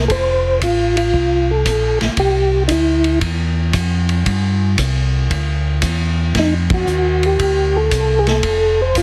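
Soul jazz organ trio in C mixolydian at 115 BPM with a swung 4/4 feel, soulful and greasy, where a soft, flute-like percussive tonewheel organ carries the melody from 0.0 to 3.2 seconds and returns at 6.4 seconds over a round, lightly overdriven tonewheel organ bass up front, both with chorus vibrato and slow rotary speaker, while a vintage drum kit with dark cymbals and a punchy kick plays hi-hat, ride, snare and kick, moving through F, Cadd9 and F7 to a band accent at 6.6 seconds, all in a light reverb with a heavily compressed radio sound in this short cut from a longer piece.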